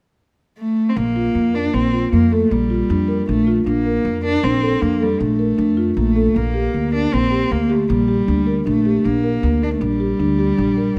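A dark, boxy bowed cello carries the melody up front from 0.6 s, its smooth, even vibrato giving a shimmering yet playful edge to this contemporary instrumental excerpt in Bb major, set in 7/4 at 156 BPM with a straight feel. At 1.0 s a soft-mallet marimba joins with round, mellow arpeggios, and a woody pizzicato upright bass anchors the low end, all moving from Bbmaj7 to Gm/Bb at 6.4 s. A moderate scoring-stage reverb lends the ensemble a spacious, polished sheen.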